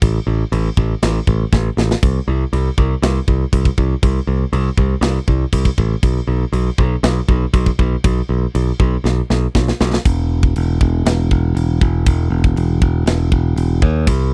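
This dry, close recording has the feel of a 1970s studio, with little reverb around the instruments. It is a short, aggressive heavy metal cut taken from a longer piece, moving at a relentless 120 BPM in a straight 4/4. An acoustic metal drum kit sits up front with a polished, airy character, pairing a tight kick and medium-tuned snare with bright crash cymbals. A picked electric bass plays low and growly beside it, its bright, punchy, direct tone also placed up front. Drum fills arrive at 1.5 seconds and again at 9.0 seconds, and the second leads into a new section at 10.0 seconds that carries the pair through to the close.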